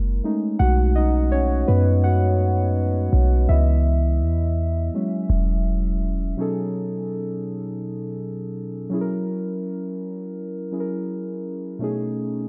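Late-night and sensual, this contemporary R&B excerpt moves at 83 BPM in a straight 4/4, with muted, felt-like synth keys carrying soft, intimate chords through a chorus effect, from B13 through C#m9 and E69. A deep, boomy 808-style bass with a clean, mellow sine tone sits up front beneath them before stopping at 6.3 s, leaving the keys to continue over B13 and F#7 until 12.5 s. Digital ambience wraps the dark production.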